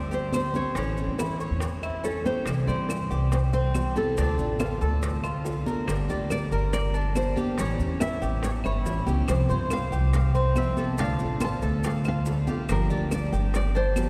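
A straight 4/4 pulse at 141 BPM drives this danceable, nostalgic Cuban son and guajira in D minor, tuned slightly low with A4 at 437 Hz. Very quiet, high-tuned congas ring under hard hands, while tight, vintage-sounding bongos are played with soft hands; both enter at 0.1 s together with grainy, mellow maracas, and claves follow in the background from 0.3 s. A dark pizzicato upright bass on steel strings sits up front, anchoring a progression that opens on Gsus4 and A before moving through C, Dm, Gm, A7 and C7sus4 once the second section begins at 2.5 s. A fingerpicked nylon-string guitar with old strings carries the woody, classical-toned melody, while the Cuban tres adds metallic arpeggios on double strings, some of them octave-doubled. A bright, full-bodied jumbo steel-string guitar picks an accompaniment in the background with audible finger squeak, and the whole ensemble sits in a church or concert hall under a wet cathedral reverb with a 5.8-second decay.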